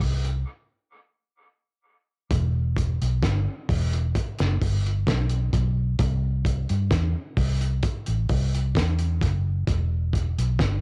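A dry, lo-fi home cassette recording catches a short cut from a longer dub reggae piece in E minor, moving at a slow 65 BPM in straight 4/4 with a hypnotic, heavy mood. Up front, a dark, round, foam-muted fingered electric bass with tube saturation holds the low end between E1 and G2. Beside it sits a cloth-damped acoustic kit of kick, snare and hi-hat that sounds muffled and gritty, with a fat snare and tight kick, and a break runs from 0.5 to 2.3 seconds before the next section carries on to 10.8 seconds.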